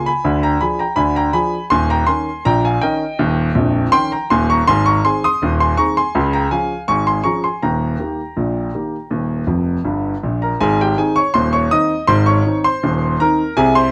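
A warm grand piano carries this lively, jaunty ragtime performance by itself, sitting up front with a present tone and a long sustain that lets each chord ring. The tempo is 81 BPM in 2/4 with a straight feel, in Ab major and tuned slightly sharp to A4 = 441 Hz. The harmony moves from a diminished chord through Eb7 to Ab, then touches Db and Eb before settling back on Ab. A short piano fill arrives at 9.5 seconds and leads into a fresh section at 10.6 seconds, which runs until the clip stops at 13.9 seconds, cut from a longer piece. Close, detailed microphones and a light reverb keep the sound intimate, clear and full across the piano's range.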